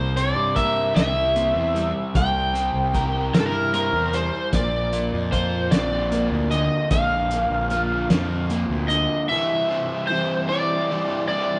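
Psychedelic rock in a hypnotic, kaleidoscopic 6/8 at 50 BPM, where a dark, overdriven slide guitar played with fingerpicks carries the melody up front through tape echo, a double-tracked semi-hollow guitar picks a riff through harmonic tremolo, a fuzzy fingered bass and a muffled, cloth-damped lo-fi drum kit with a fat snare and rolled-off top anchor the groove until 9.1 seconds, and very quiet high-tuned congas ring under soft hands, all in a stone room as this excerpt moves from C7 to Bbadd9 before landing on Cadd9 at 9.3 seconds.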